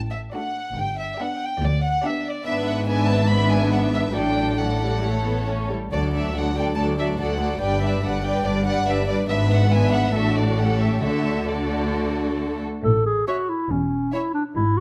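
A close, detailed recording with light reverb captures this spirited, lively excerpt from a quick classical-period movement for symphony orchestra in D major, taken at 140 BPM in 4/4 with a rubato feel. Violins carry the melody with light vibrato and a soft attack, a second violin line adds rich, expressive colour, and violas supply smooth, even accompaniment. Cellos and double basses sit distant, the cellos in the background, bowing the bass line with warm, expressive vibrato. At 12.8 seconds a mellow solo clarinet steps up front with a second line as the harmony moves to A, opening a new section.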